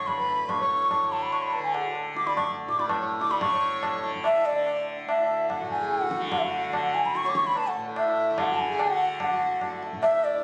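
Radiant and devotional, this short Hindustani classical passage in raga Yaman, centered on D, moves at 145 BPM in a straight 7/4 cycle, tuned to A4 = 441 Hz. A bright, airy, reedy bamboo bansuri carries the melody up front between D5 and D6, its straight tone and soft attack giving it a gentle glow. Beneath it, a reedy pedal harmonium plays a mellow, breathing second line from D4 to D5, sitting well back in the blend, while a softly plucked tanpura holds a buzzing, shimmering drone low between D2 and D3. High-tuned tabla rings out from 0.1 s, its sound compressed and saturated. The passage shifts into a new section at 3.4 s, and the whole sits in a moderate recital hall reverb, captured on a phone in the room and finished with studio reverb and compression, as a fragment cut from a longer performance.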